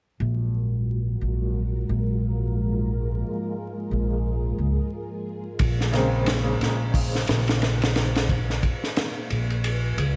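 Trip hop, dark and smoky, with a string machine's cello chords and a growly pizzicato upright bass sounding from the start, a filter sweep moving through the chorused strings, before a crunchy, gritty breakbeat kit with gated reverb enters at 5.6 seconds and a slightly detuned upright piano with tremolo and tape echo adds intimate accompaniment, all set in a bright 1980s-style digital production dusted with vinyl crackle.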